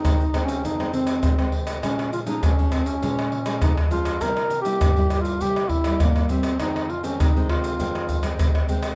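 A mellow duduk carries the melody up front, singing a folk-style solo line with vibrato until it drops out at 8.3 seconds. This short cut from a longer samba and choro piece feels lively yet bittersweet, in a straight four-four groove. Beneath the duduk, a classical nylon-string guitar fingerpicks a dark accompaniment through Fm7, Bbm7 and C7 before settling back on Fm7, with a finger squeak audible in the acoustic playing. The percussion of maracas, tight surdo, pandeiro and tamborim is played with soft hands and has a distant, large-room quality. Light reverb and a dark, warm production wrap the whole ensemble, and the guitar and percussion carry on alone to the end at 8.9 seconds.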